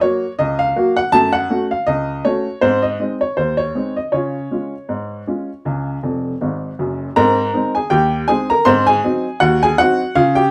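A woody, boxy upright piano sits up front in a moderate studio reverb, its short sustain keeping each note brief. This lively, jaunty ragtime excerpt moves at 80 BPM in 2/4 with a light swing on the sixteenths, the solo piano ranging from F1 to C6 in Db major over Gb, Gbm, Ab and Db. A piano fill at 6.0 s leads into a new section in Ab major at 7.2 s, moving from Ab to Ab7 before the recording cuts off at 10.5 s.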